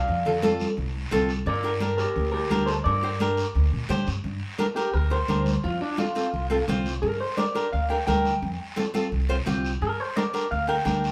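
A twangy, slightly broken-up electric guitar through a small old amp carries the melody with spring reverb, moving into a clean solo at 4.2 s in this passionate, danceable cumbia in G minor at 172 BPM. It is backed by a woody, thumpy upright bass played pizzicato, congas with a thin, bright skin, a raspy guiro sitting low in the mix, and a boxy, fingerpicked flamenco guitar with fresh strings, all moving between F and G minor chords. The band plays live in one room with wet studio reverb and a faint mains hum, and the clip is cut from a longer piece.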